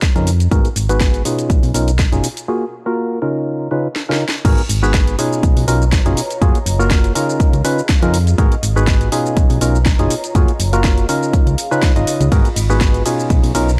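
A dry, gritty hardware sound with transformer saturation frames this short cut of bittersweet, energetic piano house at 122 BPM, swung lightly on the sixteenths. A punchy, overdriven electronic kick sits up front over a layered garage kit with a cracking snare, hi-hat, ride, shaker and crash, while a hollow, organ-like stab with chorus and analog delay and a round, dark FM bass both pump against the sidechain through rich ninth chords such as G#m9, Bmaj9#11 and F#maj9. After a break and a drum fill, the drop lands at 4.4 seconds, and from 5.3 seconds a very quiet, ethereal pad with ensemble chorus and a moving notch drifts in behind.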